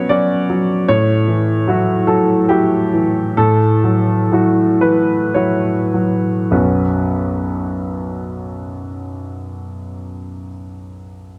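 A clear, up-front solo grand piano opens this melancholic, wistful neoclassical minimalist passage, cut from a longer piece, in a rubato three-four that slows through the first 6.5 seconds before settling on a Bsus2 chord, captured by close, detailed microphones with light reverb and tuned to A4 = 438 Hz.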